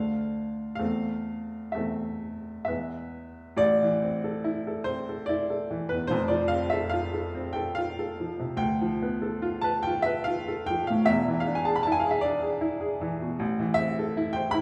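Classical romantic nocturne for solo upright piano, wistful and mournful in a flexible, rubato 3/4, cut from a longer piece. The clear, woody piano sits up front with a short sustain, reaching from deep bass notes to the upper middle register, and is wrapped in a wet recital-hall reverb with a small-room ambience. A brief opening phrase settles at 3.6 seconds into a longer passage whose harmony darkens toward an E7 chord before returning home at 13.4 seconds.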